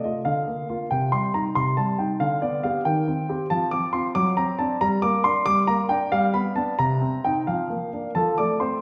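A straight 6/8 pulse carries this serious, restless classical-period sonatina fragment, heard for 8.8 seconds on a solo baby grand piano with a warm, polished and present tone spanning C3 to D6. The harmony moves through Bb/D, Cm, G/D and D7/F# to Gm, then passes G, Cm7 and Bb/F before settling on F at 8.2 seconds. A wet recital-hall reverb places the listener further back in the room.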